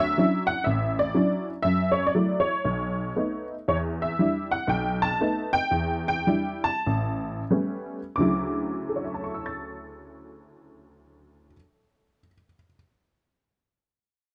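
A honky-tonk upright piano opens alone on a Dmaj9 chord, setting a relaxed, playful mood for this short solo jazz passage cut from a longer piece. The tempo moves freely between 83 and 124 BPM in 4/4, with a swung eighth-note feel and a rubato touch, and the music sits in D major. The piano's tone is detuned and jangly with a woody, vintage character, its notes decaying quickly while the playing stays smooth and up front, spanning A1 to A6. The harmony travels through F#m7, B7, Em7 and A9, and the pace slows down between 3.7 and 8.2 seconds before Dmaj9 returns at 8.2 seconds. Light reverb and a dark production frame the piano, which stops at 12.8 seconds.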